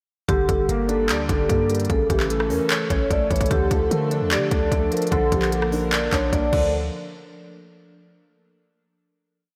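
A soft-mallet vibraphone carries a looping, sample-like melody with a metallic ring and slow motor vibrato, its notes trailed by analog delay, in this brooding, menacing trap hook in D harmonic minor at 149 BPM in a half-time feel. Beneath it, a dark concert grand piano repeats a rising and falling eighth-note arpeggio with deep bass, thickened by analog chorus, while an airy, breathy pad sustains chords in the background with a slow attack, a long release and a detuned, noisy shimmer. The trap drum kit sits up front with a hard-clipped kick, crisp hi-hats with fast rolls, handclaps, rim clicks and crash cymbal. A clean, boomy 808-style bass follows the kick with long sub-bass notes and pitch slides over a Gm, A, Dm, Bb progression. Everything is soaked in a lush hall reverb that gives the mix a dreamy depth, and after the hook ends at 6.7 seconds, a final hit rings out until 8.3 seconds.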